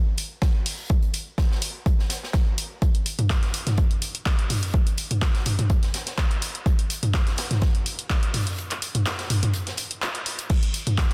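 A dense, heavily limited modern master with light studio reverb carries this gritty, driving house excerpt at 125 BPM in 4/4, with a slight swing on the sixteenths. An overdriven electronic kick, re-recorded in a large room, sits up front beside a dry analog drum machine playing crash, handclaps, hi-hat and toms. A swinging big-band kit adds airy, high-passed hi-hat and a polished, medium-tuned snare from a hall, mixed at a lower level, and a break runs from 8.6 to 10.5 seconds in this cut from a longer piece.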